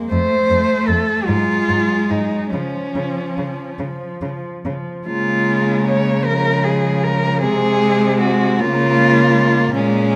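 Two bowed cellos open a lyrical classical fragment in Db major: a focused second line up front and a distant, softly blended accompaniment, soon joined by a close-miked melody cello singing with vibrato up to Db5 and a rich bass cello with a smooth top. The ensemble moves in a gently rubato 6/8 at around 46-53 BPM, with harmonies passing from F through Ebmadd11/Ab to Db, then closing on Ab/C resolving to Db at 8.6 s. A resonant recital-hall reverb surrounds the four players, lending the tender passage an intimate yet spacious glow.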